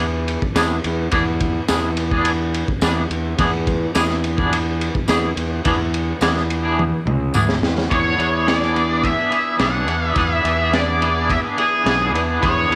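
An octave-fuzz lead guitar, dark and up front with wah, distortion and slapback echo, takes the melody at 7.9 seconds in this hazy, kaleidoscopic psychedelic rock excerpt at 106 BPM in E mixolydian, riding over a bright, twangy double-tracked guitar riff with tremolo, an overdriven round fuzz bass, a gritty, saturated breakbeat drum kit with a high-tuned snare and dark cymbals that plays a fill just before the lead enters, and a jingly tambourine in the background until 7.5 seconds, all set in light studio reverb.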